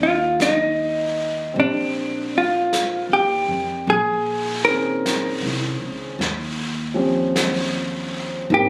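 Intimate and romantic, this short excerpt of a slow jazz ballad at 52 BPM swings gently in Eb major, moving from Ebmaj7 to Bbm11 at 3.9 seconds and settling on Eb13 at 6.2 seconds. A clean, compressed hollow-body electric guitar carries the picked melody up front, over an upright piano with smooth, long-sustaining chords and a thumpy, gut-strung pizzicato upright bass. Brushes on a vintage kit with a rolled-off top join at 0.4 seconds, playing brushed snare and hi-hat, and the whole performance is heard as if caught on a phone in a club with light reverb.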